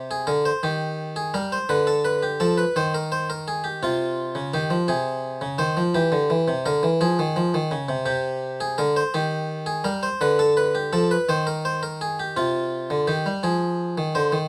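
In a straight 6/8 at 56 dotted-quarter beats per minute, this solemn yet driving baroque-style two-part invention in F minor features a solo harpsichord, plucked and bright on one set of strings in the French style, placed up front in a light reverb as it spans C3 to C5 through chords from Cm/Eb and Bdim/D to Fm, shifting into a new section at 12.3 seconds before this cut from a longer piece closes on Fm7.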